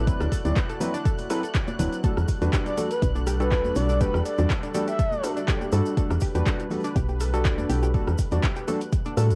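Smooth and deep, this deep house passage, cut from a longer piece, rides a gently swung groove over a D13 chord that moves to a rootless Em11. An up-front woody FM bass, soft and dark, anchors the low end beside a deep, overdriven electronic kick that sits up front. The drum kit supplies handclaps, rim clicks and metallic hi-hats, overdriven and given a cassette-tape grit, while ringing, close congas and bongos and grainy maracas sit in the background. The keys, pluck, pad and string machine all pump against the kick: mellow analog keys with square and sawtooth tones play round stabs with chorus and analog delay, an analog pluck runs background arpeggios, a smooth detuned pad holds sustained chords, and a silky, warbling string machine adds a high vintage texture. From 2.7 to 5.2 seconds, a breathy flute-like synth lead with vibrato floats a short melody through the mix. The mix has a light reverb and the hazy character of a home cassette recording.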